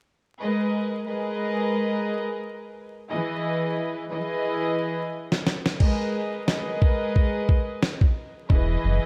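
Vinyl crackle and light reverb frame this reflective, moody boom-bap hip-hop excerpt in G# minor at 89 BPM, with a gently swung 16th-note feel. A reedy, gut-string studio string section with light vibrato carries the G#madd9 to Emaj7 harmony through a cassette-tape filter from 0.4 seconds. A gritty, sampler-style kit with a thumpy kick, fat snare and crash arrives at 5.3 seconds, and a deep, round analog bass adds a few brief low notes at 8.5 seconds.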